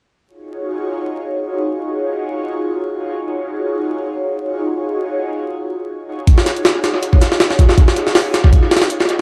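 Dark and nostalgic, this drum and bass excerpt in a jungle style opens on an airy, breathy pad holding a sustained Ebm11 chord through chorus and phaser, and the pad carries on as a gritty, pitched-up sampler-style kit with a thumpy kick, high-tuned snare, hi-hat and dub echo joins up front at 6.3 seconds, all set in an echo-heavy mix with light digital reverb, vinyl crackle and lossy compression artefacts.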